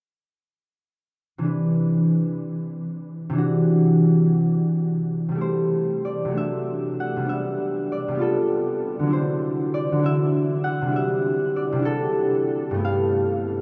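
Graceful and peaceful, this classical solo harp piece drifts in 6/8 with a free, rubato feel at roughly 54-69 beats per minute counted in dotted quarters, set in C lydian. A single concert harp carries everything, entering at 1.4 s and playing through to 13.6 s across a range from G2 up to F#5. Its thumb-plucked tone is acoustic and ringing, sitting up front with a warm roundness. The harmony glides through lush extended chords such as Cmaj9, D9/C and C69 before resting on G13, with a second passage beginning at 5.4 s that revisits the opening colours. A huge, wet reverb places the harp in a vast, echoing space, letting each note hang in a long halo of ambience in this fragment cut from a longer piece.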